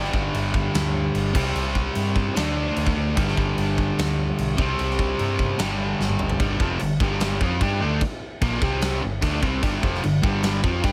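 Driving and heavy, this short hard rock excerpt charges along at 149 BPM in a straight 4/4, tuned slightly sharp to A4 = 444 Hz. An overdriven, double-tracked electric guitar sits up front with a dark, picked riff built on power chords moving among G5, C5 and D5, ranging from F2 to G4. Beneath it, a hollow-body short-scale electric bass played with the fingers adds a round, amped low end between F1 and G2. A big acoustic rock kit with a punchy kick, medium-tuned snare, toms and crash cymbal sounds natural in a large room and stays close in the mix. A drum fill from 6.0 to 6.4 seconds leads into a new section where the harmony shifts to G minor before returning to C5 and G5. Light reverb gives the whole a touch of space.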